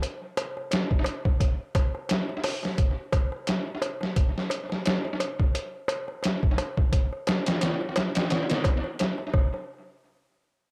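Dark and hypnotic, this trip hop excerpt moves at 87 BPM in 4/4, with a 56% swing on the sixteenths that gives the groove a loping sway. A sampler-style drum kit sits up front with a thumpy kick, a medium-tuned snare and hi-hat, sounding compressed, pitched down and muffled, as if re-recorded in a small room. Overdrive roughens the kit and an analog delay trails its hits, feeding the echo-heavy character of the mix. Beneath it, a darbuka played with soft hands adds the warm tone of a clay shell and natural skin, captured acoustically in a live room at a lower level. The drums stop at 9.5 seconds and the darbuka at 9.7 seconds, just before a brief closing passage, while light reverb keeps the whole track intimate.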